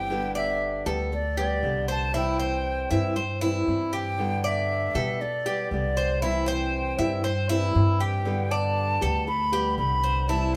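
A live band in one room is caught in a stone room's wet reverb on this relaxed Latin excerpt, which rocks gently between Gadd9 and C over a straight four-beat feel. A close-miked, hollow concert flute carries the airy, crisp-edged melody with vibrato, while a bright, fingerpicked flamenco guitar with audible finger squeak supplies accompaniment. Up front, a metallic Cuban tres picks arpeggios on double strings, some doubled at the octave, and a woody, dark pizzicato upright bass anchors the bottom throughout.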